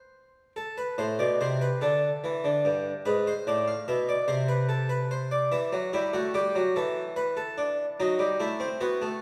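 A solo harpsichord in the Flemish style, plucked and brilliant with octave strings, sits up front in this short cut from a baroque-style two-part invention in A minor, moving at 48 BPM in a straight 6/8. The mood is solemn yet driving, with harmonies passing from Am through Gsus2, E7/G#, Em and E7sus4 before reaching B7/F# at 8.0 seconds, the harpsichord ranging from G2 to F5. A wet scoring-stage reverb surrounds the instrument, giving its bright attack a long, resonant tail.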